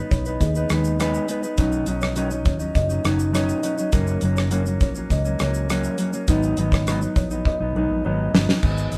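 A damped 70s drum kit with a fat snare, tight kick and dark cymbals sits up front in this mellow, wistful indie and bedroom pop fragment, joined by a clean, fingered electric guitar with a warbly pitch drift, a round, foam-muted vintage bass and a woody, ringing kalimba tucked in the background, all sounding like a band playing live in one room with moderate reverb as the chords move from G#m through Badd9 and F# to G#m7 before a drum fill at 7.5 seconds.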